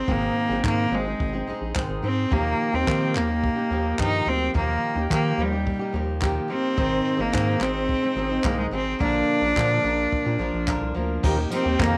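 A straight, easygoing 4/4 pulse carries this carefree, sunny acoustic pop fragment, cut from a longer piece. A jazz brush drum kit with dark cymbals and a boomy kick keeps time from 0.1 seconds, adding crash cymbal, handclaps and tambourine, and the kit has a cassette-tape tint. A picked, dark steel-string acoustic guitar sits up front with the feel of an auditorium, picking through Ab, Ebadd9 and Bb chords. Beneath it, a round analog bass with a deep, mellow, wave-folded tone holds sustained low notes. On top, a single bowed cello carries the melody with a biting, earthy edge and light vibrato, its cassette coloring shared with the guitar. Light reverb and the homespun grain of a home cassette recording give the whole piece a relaxed, intimate glow.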